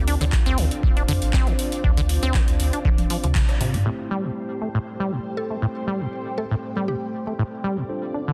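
Driving and gritty, this short acid house cut moves at 119 BPM in 4/4 with a light swing on the sixteenths, sitting in A minor and shifting from Dm7 to Am7 at 3.9 seconds. A squelchy, resonant sawtooth acid bass carries the riff up front through cassette tape colour and digital delay, with a filter sweep across its opening phrase, while a round sine sub bass with tube saturation anchors the low end until 3.8 seconds. An overdriven electronic kick and a booming analog drum machine with metallic hats, handclaps, rim clicks and toms, both re-recorded in a small room, drive the groove, working through a drum fill and a band accent at 3.4 seconds before the drums drop out. Underneath, a lush vintage string machine with ensemble chorus holds sustained chords, joined by a warbling, nostalgic lo-fi pad with chorus and built-in reverb, both pumping against the sidechain along with the basses. In the second half a clean tine electric piano adds background stabs, and a woody, mallet-like FM pluck with chorus and phaser traces a brief melody between 5.4 and 7.6 seconds. 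Light digital ambience frames a dense, heavily limited modern master.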